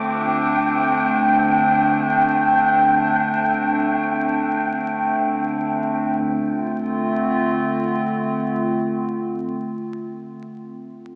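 Smoky and cinematic, this trip hop excerpt in D minor drifts in free time, with a warbling, detuned tape-like pad holding mellow sustained chords that shift from D7(no3) to Dm7 at 6.2 seconds. Up front beside it, a dark, breathy wind-like tuned noise texture hovers in a higher register until it falls away at 6.3 seconds, leaving the nostalgic pad alone until 10.5 seconds. A wet spring reverb, vinyl crackle and a small-speaker sound give the whole piece a lo-fi haze.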